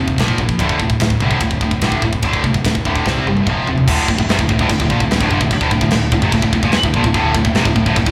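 An epic, aggressive heavy metal excerpt in straight 4/4, cut from a longer piece, with a double-tracked, high-gain guitar riff pushed up front over a growling, overdriven picked bass that sits punchy in the background. A tight, polished, airy metal drum kit with bright cymbals and a medium-tuned snare drives the passage, playing a fill from 3.1 to 3.9 seconds that launches a new section on a D minor chord. Light small-room reverb gives the mix a sense of space.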